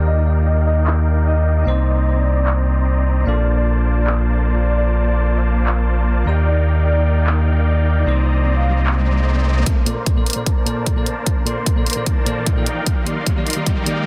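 A deep, saturated sub bass sits up front with a thick, sustained tone, anchoring this euphoric, lush future bass excerpt at 150 BPM in a half-time 4/4 feel in Bb major, its sidechain pumping breathing with the beat. Above it, huge detuned supersaw chords play the riff and a bell-like, clean tine electric piano plays accompaniment, both pumping as well, moving through Ebmaj7, Cm7 and Bbmaj7 harmonies. A velvety synth lead carries the melody in the background from 0.1 to 8.9 seconds, coloured by chorus, vibrato and delay. A layered dubstep drum kit with handclaps and hi-hat runs through most of the piece, and a riser climbs in the background from 8.0 seconds. At 9.7 seconds a punchy, up-front electronic kick enters as the music shifts into a build-up, with a filter sweep on the supersaw chords over a dense, heavily limited master with light reverb.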